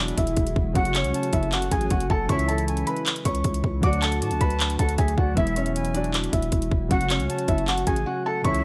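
Hip hop trap in a dark, menacing half-time feel, cut from a longer piece, where a soft, felt-muted upright piano carries the melody through digital delay over warbly, detuned lo-fi synth keys with chorus, a growling, buzzy 808-style bass and an up-front trap kit of hard-clipped kick, metallic hi-hats and handclaps, while a pure, straight-toned concert flute adds a delayed second line from 0.8 seconds and a very quiet, glassy FM pad holds chords until 2.3 seconds before returning at 8.4 seconds just after a short break, all set in a dry mix.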